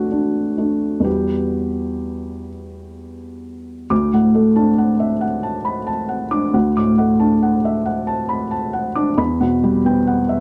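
Played in a slow, rubato 6/8 at 41-46 BPM counted in dotted quarters, this short fragment from a longer neoclassical minimalist piano piece has a melancholic, intimate mood. A felt-muted upright piano plays alone throughout, its mellow, soft tone sitting up front and spanning D2 to D6 as the harmony moves between D and Emadd9, with a second section starting at 3.9 seconds. The sound is dry and close in the manner of a 1970s studio recording, with a moderate touch of room ambience.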